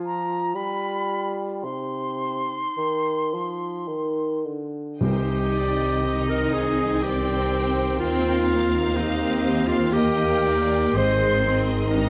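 This slow, rubato orchestral passage in triple metre, cut from a longer movement, opens with woodwinds: a warm, smooth-topped clarinet carries a second line while a mellow bassoon with light vibrato sits up front in accompaniment, and an airy, metallic flute with soft attack hovers high above for the first few seconds. At 5.0 seconds strings, brass and timpani join the clarinet, with a clear, focused studio violin section singing the yearning melody over a bright violin section and a lush, even viola section in the background. A dark, vintage French horn section holds loose sustained chords beneath them, and a rich, expressive double bass section anchors the bass up front, joined shortly after by a smooth cello section. Timpani struck with hard mallets add an articulate, close accent that ends at 6.5 seconds. The mood is melancholic and longing, the harmony moving from minor toward brighter major chords, and the whole is set in a dark production with the reverb of a stone room.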